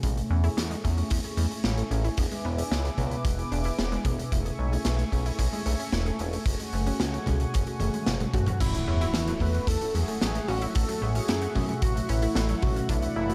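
A glossy, nasal chorused synth bass pumps up front in this nostalgic, uplifting synthwave excerpt, beneath a shimmering pulse-width pad with 12-bit sampler grit, round analog pluck arpeggios, dreamy FM electric piano stabs with phaser and delay, and a punchy, saturated kick and raw garage kit in a bright stone room, while a thick, bold unison lead with vibrato enters at 8.3 seconds and a background electronic impact lands at 8.7 seconds.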